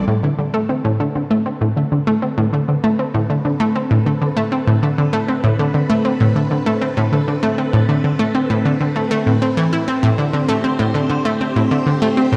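Ambient, sequencer-driven space music in A minor at 98 BPM, this cosmic, mysterious passage from a longer piece rests on an Amadd9 chord. An up-front, round, detuned analog pluck with a fast attack and decaying sawtooth tone plays a riff from A2 to E4, colored by chorus and delay. Behind it, a swirling, vintage phased string machine fades in from 0.1 seconds with slow-attack sustained chords between C4 and C5, bathed in ensemble chorus, phaser and shimmer reverb, all within a dark production and a wet concert hall space with a 2.3-second decay.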